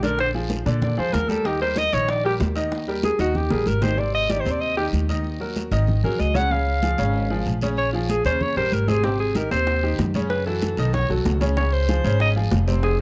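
A breathy alto saxophone leads this danceable, sophisticated Afro-Cuban jazz excerpt at 190 BPM in Eb major with a vintage subtone solo and scooped notes up front, over brilliant open upright piano, a woody pizzicato upright bass with steel strings, warm high-tuned congas played with soft hands, a raspy close guiro, and round low-tuned bongos that drop out at 3.9 seconds and return at 9.0 seconds, all captured in a dry, close 1970s-style small-room studio sound.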